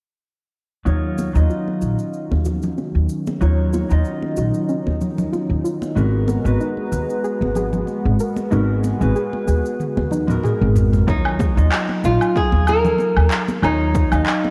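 A lightly swung 4/4 groove from a smooth R&B drum kit, a woody, up-front upright bass and bright, hard-hand congas carries this relaxed sunset chillout excerpt, where a dark, clean electric guitar, a thick detuned pad and a soft, round plucked arpeggio, both under filter sweeps, drift through a lush hall reverb and warbling cassette-tape wear until a drum fill at 9.8 s leads at 11.1 s to an up-front fingerpicked flamenco guitar melody over a punchy, overdriven electronic kick.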